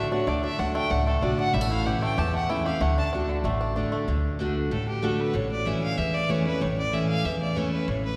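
Soaked in a wet church reverb, this rustic, driving bluegrass passage in D major at 189 BPM puts a clear, earthy bowed fiddle with light vibrato up front on the melody, over a woody, full-bodied picked jumbo acoustic guitar with old strings, a pizzicato upright bass, and a twangy, percussive fingerpicked banjo playing arpeggios until it drops out at 4.1 s.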